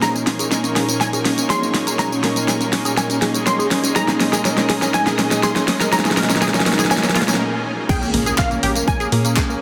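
Bittersweet and dreamy, this progressive house passage at 122 BPM is cut from a longer piece and spends most of its length building toward a drop. A lush, bright unison pad holds sustained chords over a Dbsus2/Bb harmony with chorus and sidechain pumping. A detuned pluck carries a high melody through dub echo, while a tight sequenced synth runs arpeggios through chorus and phaser, both sitting in the background. A smooth, full-bodied supersaw adds stabs, and filter sweeps on the supersaw and the arpeggio synth run through the build as a deep house kit with a fat, up-front snare, handclaps, hi-hat, tambourine and crash plays a long fill under a very quiet riser. After a short break, the drop lands at 7.9 seconds on Bbm7 with an impact, a punchy, tape-tinged electronic kick and a tight, saturated sequencer bass with a mellow, wave-folded edge. The mix is dense and heavily limited, bathed in a huge ambient reverb with an 8.4-second tail.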